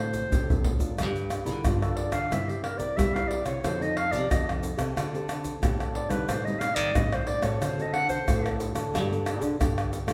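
A warm clarinet carries the solo line in this nostalgic, bittersweet samba-choro excerpt in G minor at 91 BPM, falling silent at 8.7 seconds, over thumb-plucked nylon-string guitar accompaniment, a full-bodied nylon-string guitar bass, and up-front egg shaker, pandeiro, tamborim and deep surdo played with hard hands that open with a drum fill, all ringing in a large, reverberant studio room as the chords move from D7 through Gm7 and Am7b5 to settle on Gmadd9.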